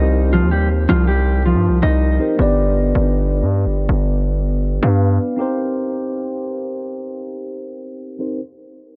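A distorted 808-style bass dominates this short hard-hitting, eerie trap excerpt, its saturated, aggressive sine tone carrying a noise layer, a fast attack and a decaying tail from the start until 5.2 seconds. The track moves at 160 BPM in 4/4 with a half-time feel in C minor, built over Cm7 and G chords. A dark, clean, fingered electric guitar carries the melody through a digital delay for the opening 2.4 seconds, sitting up front beside a mellow tine electric piano whose lush chorus gives its accompaniment a soft sheen. The electric piano continues alone after the bass stops, holding the harmony until 8.4 seconds. A filter sweep runs from 2.4 seconds to the end, and light reverb with a digital ambience and a low-pass filter lends the mix a dim, hazy character.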